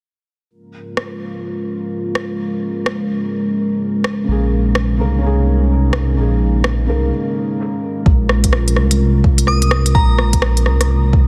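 Future garage at 127 BPM in Bb minor, with a swung 16th-note feel and a melancholic, rainy mood in this short cut from a longer piece. A dark analog pad opens on a Bbm7 chord at 0.5 seconds, its detuned, moody sustain pumping under sidechain and thickened by chorus, while an organic electronic drum kit brings smooth, overdriven hi-hats and rim clicks in a small room. Around 4.2 seconds a felt-muted upright piano adds soft, intimate accompaniment trailed by dub echo, joined almost at once by an up-front, rumbling detuned saw bass with tube saturation. After a break from 7.1 to 8.1 seconds, a deep, layered electronic kick drum arrives at 8.1 seconds, overdriven and placed up front, and a crystalline FM synth bell briefly rings out a high melody through chorus, phaser and dub echo. The mix has light reverb and a dense, heavily limited modern sheen.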